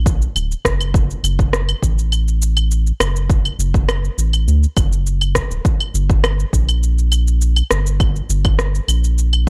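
Hypnotic and organic, this downtempo groove in straight 4/4 is cut from a longer piece and rides on a round, nasal analog bass that sits up front from the start, dark and sustained with a fast attack, moving between D1 and D2 until 9.5 seconds. An overdriven, layered electronic kick with a deep body, re-recorded in a large room, pushes forward until 8.6 seconds, while electronic cabasa, claves and rim click sit up front alongside it. The sound is dry and gritty with a digital ambience.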